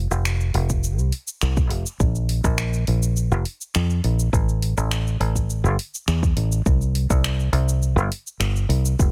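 The fingered electric bass stands out most in this short sunset chillout excerpt, sitting up front with a punchy, foam-muted tone that stays direct while moving between F1 and F2. It opens the clip at 0.0 seconds, with a deep house drum kit of finger snaps, hi-hat and shaker joining at 0.1 seconds, its dark hats placed well behind the bass. An electronic kick drum arrives at 0.7 seconds, adding a deep, layered thump underneath. The groove moves at 103 BPM in a straight 4/4, and the mood is smooth and wistful. The sound is dry, with little reverb, giving the parts a tight, intimate presence.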